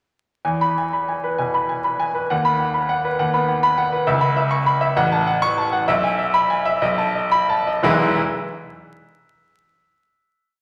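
A clear, worn grand piano sits up front in this brilliant, sparkling classical virtuoso study, its rippling figuration joined by a second figure in the upper hand and shaped with a free, rubato feel. The piece slows from 3.2 seconds as the harmony travels toward a B7 and settles on a final E chord at 7.8 seconds. The playing rings in a wet recital hall reverb beneath a vinyl crackle.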